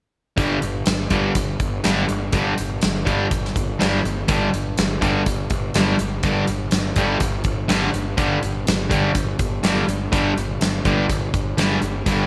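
Energetic and anthemic, this short hard rock passage, cut from a longer piece, drives along in a straight 4/4 from its opening G5 chord. Two bright, distorted, picked electric guitars play the riff from 0.4 seconds to 12.3 seconds, one of them compressed and sitting in the background behind its partner. A fuzz picked electric bass holds a low G underneath, overdriven and punchy, with a warm, amped tone placed up front. The big rock drum kit hits hi-hat, a punchy kick and a medium-tuned snare, its acoustic sound mid-forward and treated with gated reverb, with a big-room scale. Light reverb and studio ambience frame a polished, bright 1980s-style digital production.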